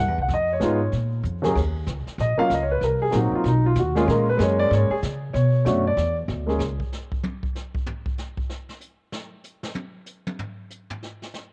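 A concert grand with an open, deep-bassed tone and a woody pizzicato upright bass, both up front, begin this cool, late-night jazz piano trio excerpt in Eb minor at a swinging 190 BPM, joined by a quieter brushed kit with dark cymbals, a boomy kick and cassette-tape coloring, whose fill at 1.2 seconds leads into a piano solo at 1.6 seconds before the piano stops at 6.6 seconds and the drums carry on in a solo, the whole heard as a home cassette recording with light small-room reverb.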